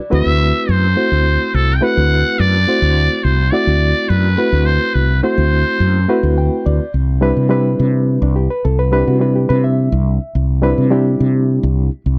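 A 6/8 pulse with a straight feel carries this bright, soaring piece of electric jazz fusion, cut from a longer performance. A reedy electric piano with a fast tremolo, heard through its built-in speakers, lays down clean accompaniment from the opening D13 chord. Beneath it, a fretless electric bass sits up front with a dark, round, direct tone. A trumpet with a metal mute carries the melody until 6.3 seconds, its buzzy, raspy voice colored by vibrato, scooped notes and a growling, vintage jazz edge. The electric piano slips in a short fill at 6.1 seconds as the music moves into its second section, and the dry, close sound of a 1970s-style studio is touched with light reverb.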